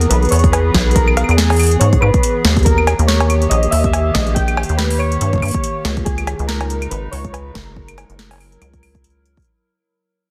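This IDM cut, lifted from a longer piece, moves at 141 BPM in 4/4 with a 56% swing on the sixteenths, giving it an eerie, intricate character. A rubbery, resonant acid bass sits up front, its dark square-wave plucks striking fast and decaying beneath a booming analog drum machine whose crisp snare, metallic hats, claves and cowbell are overdriven and carry the sound of a small room. An electronic kick with a deep, tape-warm thump joins at 0.4 seconds. Above them, warbly lo-fi synth keys play a mellow, nostalgic melody through chorus and tape echo, while a detuned, vintage pad holds slow-blooming chords with a sub octave and its own reverb. The harmony moves from E to D#, then C#sus2 and F#7. A fade-out begins at 2.7 seconds, and the dense, heavily limited master is framed by light digital ambience.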